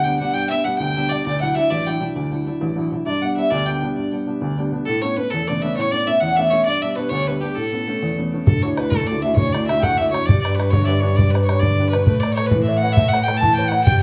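A clear, earthy fiddle carries the melody with a touch of tape echo over a woody upright piano and a hollow, distant baroque flute on a second line in this lively, rollicking Celtic slide in 12/8 at 133 BPM in A mixolydian, until at 8.5 seconds a warm, expressive bowed cello takes the bass and a tight, damped bodhran joins, all in a live room with a short, wet ambience.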